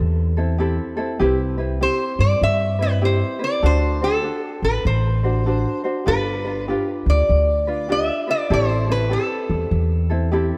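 A relaxed swing at 99 BPM in 4/4 carries this dreamy Hawaiian excerpt in C major, moving through Am7, Cmaj7, D7 and G7 before returning to Am7. A lap resonator guitar takes the melody with slide and fingerpicks, its tone bright, metallic and nasal, while a light, fingerpicked ukulele plays the accompaniment. Underneath, a woody, thumpy upright bass with steel strings plays pizzicato, all three parts up front yet set back in the room within a moderate plate reverb.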